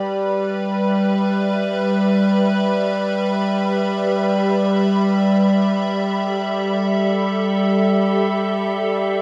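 An evolving wavetable pad, bright and up front, sustains warbling, detuned chords over a G chord with chorus, built-in reverb and shimmer reverb, while a reedy, breathing pedal harmonium holds a low drone beneath it through the whole 9.2 seconds of this peaceful ambient fragment, all set in a dark production and a huge, wet reverb.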